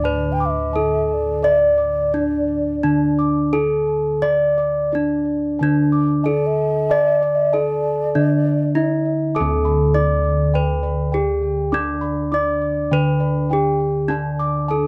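A dry recording frames this serene, ceremonial Javanese gamelan excerpt in D pelog barang at 86-102 BPM, where a ringing bronze metallophone struck with a wooden mallet carries the melody up front, a low xiao adds an airy, vibrato-laden second line with a crisp attack until 9.1 s, bossed gongs with a round, beating, vintage, band-limited tone play arpeggios alongside a soft metallophone on padded disc mallets heard in the background through a boxy small-room sound, and padded bossed gongs supply the bass beneath.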